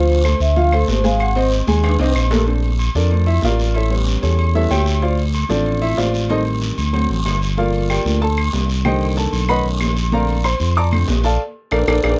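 A straight 4/4 Afro-Cuban jazz groove drives this sophisticated, danceable excerpt, with ringing agogo bells and metal-shelled timbales set back in a large room, woody claves in the background and a raspy guiro. Underneath, a smooth, dark synth bass with a sawtooth-and-square character and gliding portamento sits up front and anchors the low end. The opening melody belongs to a mellow, soft-mallet vibraphone played with the motor off, and a drum fill leads into a clear, intimate upright piano solo at 2.5 seconds. The piano has a boxy, woody tone with audible action noise, moving through jazzy changes such as Bbmaj7, A7, Am7b5 and B9. A band accent at 11.4 seconds punctuates the close of this dry, close 1970s-style studio recording.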